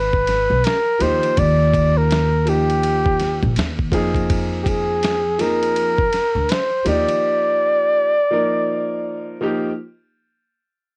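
A breathy, whispered flugelhorn with vibrato sits up front from the start, playing the melody over woody, growly pizzicato upright bass in this mellow, cool jazz-hop excerpt at a swung 82 BPM in Eb major, joined by a gritty, compressed sampler-style kit with a thumpy kick and a smooth vintage grand piano entering at 1.0 seconds, while the horn, drums and piano carry cassette-tape grain and the bass and drums drop out around 7.1 seconds, leaving horn and piano in a lightly reverberant home-recorded room.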